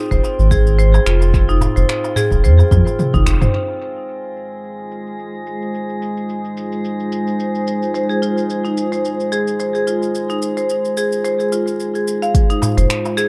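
A glassy texture of drifting overtones opens this earthy organic downtempo piece at 109 BPM in F minor pentatonic, quickly joined by tape-echoed marimba arpeggios, a round sine sub bass pumping beneath an overdriven electronic kick, a crisp metal-shell darbuka and a swung, low-passed deep house kit of finger snaps, hi-hat, shaker and toms, before a drum fill from 2.7 seconds and a band accent at 3.3 seconds give way to a filter sweep on the drums while a warbling, nostalgic tape-like pad of detuned chords enters at 4.6 seconds and the marimba returns, set in an echo-heavy mix with spring reverb.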